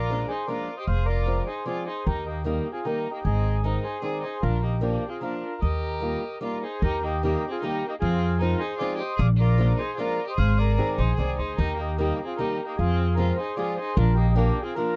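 The recording is dry and close, with a dark, warm production that keeps every instrument near the listener. It is a nostalgic, whirling musette waltz in 3/4, taken from a longer piece, and its two passages share the same opening material, the second beginning at 6.8 seconds. A reedy, full accordion carries the melody up front, its mellow tone-chamber sound steering the tune. Beneath it a single bowed violin adds a quieter second line, focused and smooth on top with vibrato. A fingerpicked acoustic archtop guitar gives a boxy accompaniment, and a pizzicato upright bass, the loudest part, supplies a woody, growly, thumpy low end until it stops at 14.5 seconds. The harmony circles through chords such as Bb7, Fm, Eb and Ab, with a brief Ebadd9 and Fm7 adding color along the way.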